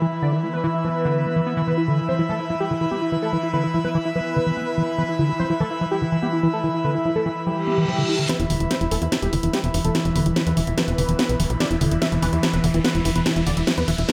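Bathed in a moderate digital room reverb, this driving, intense psychedelic trance excerpt opens with a thick, detuned unison lead through phaser, cassette tape and delay, a squelchy, resonant liquid acid bass under a phaser and filter sweep, a morphing wavetable pad with phaser and built-in reverb in the background, and a soft, breathy pad with chorus, until a reverse cymbal and riser arrive at 7.6 seconds and an up-front techno kit with a cracking snare and hi-hat and a punchy, ring-modulated sequencer bass join at 8.3 and 8.4 seconds for a build-up with a drum fill.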